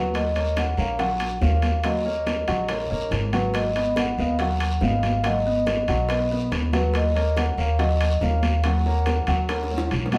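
Fiery and driving, this short Afro-Cuban jazz excerpt moves at 141 BPM in a straight 4/4, centred on Eb minor and moving between Ebm7 and Abm7 chords. A mellow vibraphone played with soft mallets carries the melody, its metallic, ringing tone bathed in plate reverb with the motor off. Beneath it, a grand piano supplies intimate accompaniment, its action noise audible, while a woody, growly upright bass sits up front with a dark pizzicato pulse. The percussion enters just after the start: high-tuned congas and tight bongos sit distant in the background, a raspy guiro is heard close, and vintage metal-shell timbales ring with a band-limited edge. The whole ensemble is heard from further back in a studio room with a short, wet reverb, and a drum fill arrives at 9.5 seconds before the clip is cut off.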